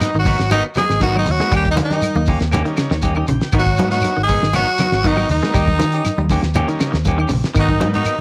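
A home cassette recording with light reverb carries this defiant, funky afrobeat excerpt, where a gritty, raspy tenor saxophone leads up front with scooped notes and vibrato over a very quiet, punchy alto saxophone and a veiled, cup-muted trombone section. Stabs from a hollow-body semi-hollow electric guitar and twangy picked arpeggios from a clean electric guitar sit behind them, with a buzzy vintage combo organ that adds a fill from 2.5 to 3.5 seconds. Underneath, a round, dark fingered electric bass joins a dry 70s drum kit with a fat snare and tight kick, while ringing congas, woody claves and a grainy shekere sit in the background.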